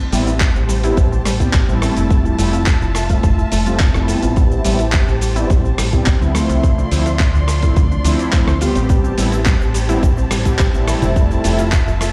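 A dark chamber string section opens this nu-disco excerpt with bowed, vibrato-rich sustained chords. It is joined at once by a lush, detuned unison pluck playing arpeggios in the background and a gritty, overdriven sampler-style drum kit of cabasa, handclaps, hi-hat, ride cymbal and rim click. Moments in, a round fingered electric bass with an envelope filter arrives alongside mellow sawtooth synth brass colored by chorus, phaser, cassette tape and slapback echo, while a punchy, layered electronic kick sits loudest in the mix. The strings, pluck and brass carry sidechain pumping, and the pluck also trails an analog delay. The harmony moves from Fmaj7 through Am7 and Dm7 before returning to Fmaj7, and at 8.9 s bright egg shaker and congas, played with soft hands, join in the background. The mood is sensual and cosmic, with a stone-room reverb that sounds like a big sound system playing in a bare room.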